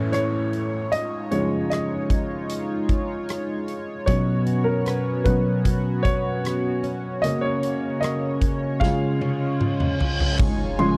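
Tender and emotional, this pop ballad moves at 76 BPM in a straight 4/4, led by an up-front, natural baby grand piano over a shimmering, retro chorused pulse-width pad and a big-room arena drum kit with a punchy kick and medium-tuned snare. A full-bodied, fingerpicked steel-string acoustic guitar enters in the background with arpeggios at 4.1 seconds, while electronic effects add a downlifter and a reverse cymbal, and a drum fill beginning at 8.8 seconds leads into an impact at 10.4 seconds. There a dark, lush violin section with vibrato and slapback echo briefly appears in the background, all within a dry, close 1970s-style studio sound.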